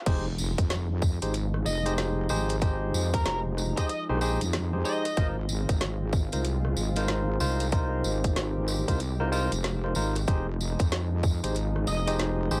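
Lightly reverberant, this gritty, playful, swung glitch hop excerpt opens on a very quiet electronic swell and impact as a heavy, saturated wobble bass and a tight kick drive beneath a drum kit with woody snare and metallic hats, a jingly tambourine, bright, barky electric piano stabs with dub echo, and a smooth, warbling analog pad held in the background, while a dark octave-fuzz lead guitar carries the melody from 1.7 to 5.2 seconds and returns briefly at 11.9 seconds.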